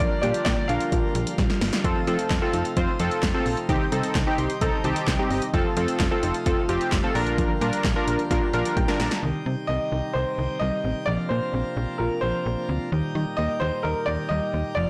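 A bright, upbeat synth-pop excerpt at 130 BPM in F mixolydian opens with everything at once: a punchy, overdriven analog drum machine with handclaps, hi-hat, kick and snare up front, a snappy, metallic FM slap bass, airy, warbling chorused analog keys, a dark, soft pluck playing chorused, tape-echoed arpeggios in the background, and a brilliant plenum pipe organ holding sustained chords, while a polished grand piano adds a brief tape-echoed melody. Fills on drums and synth keys arrive just before 9.2 seconds, where both drop out, and the piano melody comes back at 9.7 seconds over organ, pluck and bass. The recording itself sounds blown-out and overdriven under light reverb, moving through chords such as Bb6, F7 and Cm.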